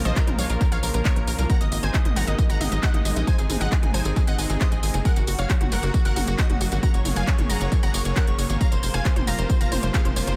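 A straight 4/4 pulse at 135 BPM drives this euphoric, soaring uplifting trance excerpt, where an up-front, punchy electronic kick and a layered techno kit of smooth hi-hats, handclaps, tambourine and toms sit over a tight, driving sawtooth sequencer bass, while a lush detuned supersaw pad holds sustained chords in the background through Bbm, Abadd9, Gb and Fsus4, a bright ring-modulated unison pluck carries the melody through analog delay, and a catchy square-wave plucky unison lead adds a higher second line with phaser and delay, the pad, pluck, lead, bass and kit (though not the kick) all pumping with sidechain in a light digital ambience.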